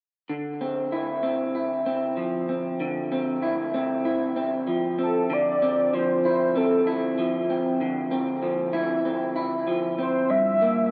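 A dark, warm production bathed in a lush hall reverb gives this floating, dreamy dream pop fragment at 96 BPM its depth. From 0.3 seconds an up-front electric guitar through a small old amp picks lo-fi, slightly broken-up arpeggios over a Dm9 chord, coloured by chorus and tape echo. At 5.0 seconds a velvety, detuned synth lead with vibrato enters carrying a smooth, sustained melody, and the harmony moves to Gm7 near the end of the cut.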